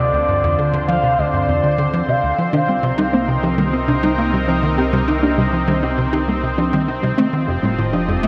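Ambient, sequencer-driven space music at 100 BPM in 4/4 with a mysterious, expansive mood, this excerpt moves through Dm7, Cm7 and F7 as a punchy sawtooth sequencer bass drives a riff under a lush, detuned unison pad that sits bright and up front. A smooth, expressive lead with vibrato sings a short melody only until 2.4 seconds, and a soft, round, warbling pluck takes up background arpeggios from 2.5 seconds. Beneath it all, a deep sine sub bass fades in, while spring reverb and heavy tape echo give the mix a spacious, drifting feel.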